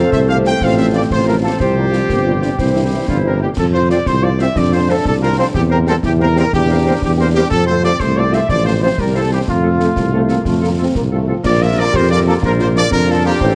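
A steady 6/8 pulse at 122 dotted-quarter beats per minute drives this rousing, festive military-style march for wind band in F major, cut from a longer piece, with a close, dry concert snare, bass drum and dark-toned clash cymbals touched by analog delay entering at 0.1 seconds. Up front, a clear trumpet section with light vibrato carries the melody through its own echoing delay, while the tuba anchors the bass with soft-attacked, prominent low notes; a background woodwind section and a very quiet, mellow euphonium add second lines, and soft French horns and a tight trombone section supply quiet accompaniment and sustained chords. The echo-heavy mix has light reverb, studio ambience and a cassette-tape character, and at 11.4 seconds the harmony moves from its F and C progressions to B-flat as a new section begins.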